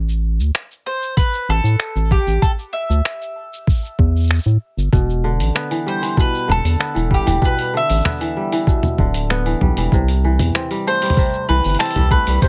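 A round, deep analog bass opens this wistful, autumnal folktronica excerpt at 96 BPM in a straight 4/4. Its dark, wave-folded tone sits up front, and a muffled, lo-fi sampler-style kit of finger snaps, hi-hat, shaker and toms arrives just after. A picked mandolin carries the melody from 0.9 seconds, its double strings warm and close, touched with tape echo. At 1.2 seconds a compressed, pitched-down electronic kick adds a thumpy pulse at the front of the mix. A bright, fingerpicked kora joins at 4.9 seconds with ringing, crisp arpeggios, also treated with tape echo, as the harmony moves from A5 to Em7 and then C6, all within a light reverb.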